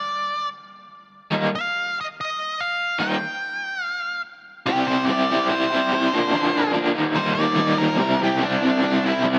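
Lightly reverberant and up front, this swaggering, menacing rock clip at 144 BPM opens with a dark, fuzzy octave-fuzz lead guitar playing the melody alone until a bright, double-tracked, overdriven guitar riff with tremolo enters at 1.3 s over Eb, and the lead breaks into a distorted solo at 4.7 s as the chords move through C, Bb and Eb.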